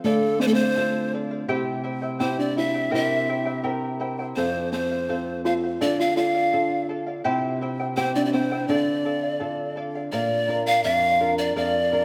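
Earthy and melancholic, this Andean folk ensemble piece in 2/4 is carried by an up-front bamboo pan flute with a breathy, tongued tone, audible chiff and vibrato, over a soft, buzzing kalimba second line whose woody, hollow-box plucks drop out at 9.8 seconds. Beneath them, a fingerpicked charango adds a shimmering, double-strung sparkle with some octave-doubled strings, while a dark, thumb-plucked flamenco guitar anchors the low end. A moderate scoring-stage reverb surrounds the ensemble as a minor-key progression gives way to a new section at 10.1 seconds before the cut.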